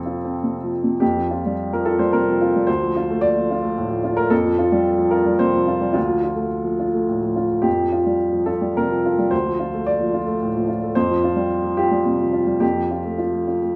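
Neoclassical minimalist piano in a rubato 3/4, tender and hopeful, carried entirely by a solo upright piano that sits up front with a woody, intimate tone, audible action noise and long sustain. The harmony rocks gently between Fsus2 and D minor before settling back on F near 12.6 seconds. A wet stone room reverb surrounds the instrument, giving this short cut from a longer piece the feel of a live performance in a single room.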